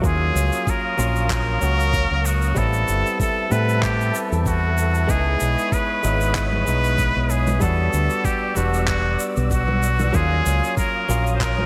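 This short excerpt of relaxed, wistful sunset chillout opens with a bright, twangy clean electric guitar picking out an accompaniment beside a silky, warbling string machine that drifts in the background with chorus and a touch of vintage sampler grit. Underneath, a fingered electric bass sits up front, its envelope filter giving it a rubbery bite, while an overdriven, thumpy electronic kick pairs with a dark, smooth shaker and handclaps soaked in gated reverb, all riding a gentle sixteenth-note swing. Almost at once a trumpet with a straight mute takes the lead, close-miked and breathy, its nasal, whispered tone colored with vibrato and trailing delay for an intimate, jazz-tinged solo voice. At 6.5 seconds, high-tuned, thin-skinned congas slip in quietly behind the groove. Minor ninth chords drift through an unhurried progression, and the bright, 1980s-style digital production wraps the parts in a lush hall reverb.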